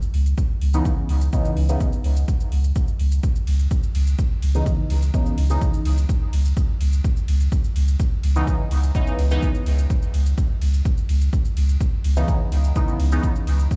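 Dub techno at 126 BPM in 4/4, this deep, hypnotic excerpt sits on a single C#m9 chord in C# minor, cut from a longer piece. A punchy analog kick enters at 0.4 seconds, up front and touched with studio reverb, while a soft, round sub bass holds C#2 from the start, sustained and pumping against the sidechain. The deep house kit keeps its metallic hi-hat, ride cymbal and shaker low in the mix, layered and overdriven with a studio reverb of its own. A juicy, resonant sawtooth polysynth plays stabs between C#3 and D#4 from 0.7 seconds, evolving through a filter sweep with chorus, phaser, dub echo and sidechain pumping. The sound is digital and spacious, as if played on a big sound system in a bare room with a large studio reverb.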